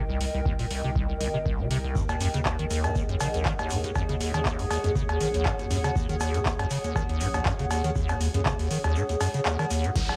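Lightly reverberant with cassette grit, this gritty, driving acid house excerpt moves at 120 BPM in 4/4 with a gentle 16th-note swing, shifting from Cm7 to Ebm7. A squelchy, resonant square-wave acid bass riff sits up front, tube-saturated, chorused and sampler-crunched with tape echo and sidechain pumping, over a deep, thick sine sub bass and a cloudy, wave-folded granular pad that blurs slowly through its built-in reverb. A booming analog drum machine with metallic hats, cowbell, handclaps and crash is soon joined by a tape-warm deep kick, a grainy, mellow shekere murmurs in the background from 2.0 seconds, and an electronic downlifter closes the clip at 10.0 seconds.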